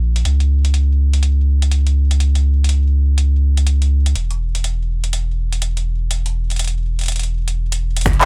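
A 16th-note swing of 62% gives this 123 BPM IDM groove in 4/4 a loping, off-kilter gait, set by a booming analog drum machine that enters at 0.2 seconds with finger snaps, handclaps and metallic hi-hats, both hats and snare dulled by low-pass filtering and given a tape-warm tint. Underneath from the first moment, a warm sub bass sits up front, a round, sine-like tone with a fast attack and long sustain, spanning a range from E1 to C#2. The mood is eerie and melancholic. Just before the close, at 8.1 seconds, a deep, produced electronic kick drum lands briefly, carrying the roomy character of having been re-recorded in a large space. Otherwise the mix stays dry with very little reverb, and the whole thing plays as a short excerpt lifted from a longer piece.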